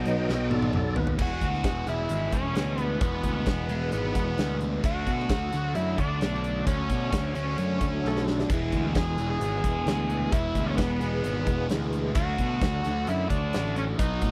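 Sunny and driving, this classic rock passage is cut from a longer piece and rides a straight, steady four-beat groove. The tonewheel organ features in the opening moments, holding full, lightly overdriven chords with key click, chorus vibrato and a slow rotary speaker, though it sits very quiet in the mix. A double-tracked, overdriven electric guitar riff with phaser and a punchy, up-front fuzz bass drive things from the start, while a huge acoustic arena kit adds bright cymbals, a medium-tuned snare, punchy kick and toms, with drum fills early on and again around 8.0 seconds. At 1.2 seconds a dark, up-front octave-fuzz lead guitar takes the melody, its distortion colored by slapback echo. Briefly, from 8.1 seconds, a clean lap steel slides in the background with compressed volume swells. The sound is dry and close, like a 1970s studio recording.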